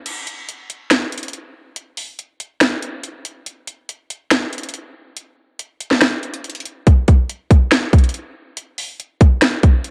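Melancholic and eerie, this hip hop excerpt moves in a half-time feel at 141 BPM in 4/4, carried by a single electronic trap drum kit that sits up front from 0.1 to 9.9 seconds. The kit's hard-clipped kick, sharp snare, finger snaps, crash cymbal and warm hi-hats are overdriven, coated in vintage 12-bit sampler grit, and re-recorded in a small room. A break runs from 0.1 to 6.9 seconds, and light reverb surrounds the whole mix.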